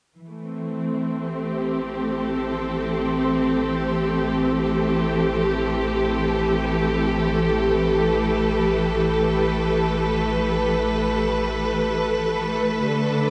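Ambient piece in free time and A minor, melancholic and spacious, where a lush, up-front symphonic string section holds soft-attacked, vibrato-laden chords on Am7 from 0.2 seconds over a deep, round sub bass fading in on A, all bathed in a long hall reverb, until a very quiet twinkling granular shimmer appears at 13.1 seconds just before this excerpt is cut off.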